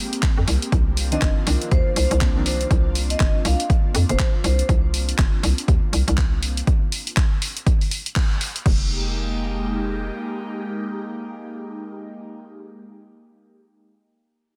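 A punchy, overdriven analog kick sits up front in this hypnotic, moody deep house passage, joined by a hollow, bouncy FM bass pumping under the sidechain, a layered drum kit of crash, handclaps and hi-hat, an airy, breathy pad with chorus and phaser sustaining chords throughout, a dark wave-folded chord stab with tape echo from 1.1 to 3.0 seconds, and a metallic, ringing vibraphone melody that ends at 4.7 seconds, before the drums drop away at 8.8 seconds and leave the bass and pad in a dense, heavily limited mix.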